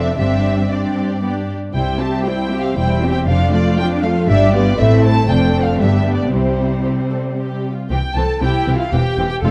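A dark, warm production sets a string orchestra on a scoring stage with moderate reverb, giving this brief, spirited cut from a longer classical-period movement a graceful glow. In C major at a quick 116 BPM in 3/4, the first violins carry the melody between C5 and A5 with light vibrato and a smooth, even top, while the second violins weave a lush, expressive second line beneath. Close-miked violas fill in the accompaniment with vibrato and touches of portamento, and the cellos, rich and steady, join the more distant double basses on the bass. The harmony moves from a Gsus4 through G, C, Dm/F, G7 and Am before settling back on C around 6.3 seconds. At 7.9 seconds the music turns into a new section, landing on C/E at 8.9 seconds as all five sections play through to the cut at 9.5 seconds.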